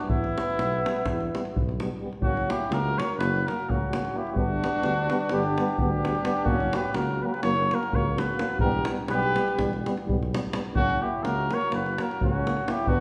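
A cup-muted cornet carries a veiled, up-front melody over a mellow, distant flugelhorn second line and close, deep davul from the first moment, with dark tuba bass joining at 0.1 s and a mellow French horn and warm euphonium adding soft background accompaniment from 0.4 s, driving a restless, fiery Balkan brass band excerpt in 9/8 at 254 BPM through chords of Em, F#, and G in a large, reverberant room.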